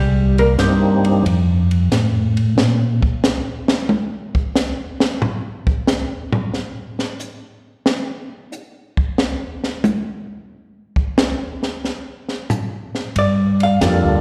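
Soul jazz organ trio at 91 BPM in a greasy, bluesy F mixolydian swing, heard live through a venue PA in a reverberant recital hall, where a dark, compressed hollow-body guitar with slapback echo solos over brief comping, a round tonewheel organ bass with slow rotary and key click anchors the opening and close, a fat, lightly overdriven percussive organ adds short melodic stabs, and a compact cocktail kit with a high-tuned snare and punchy kick takes a drum break from 2.6 to 13.2 seconds before the band returns on Gm7.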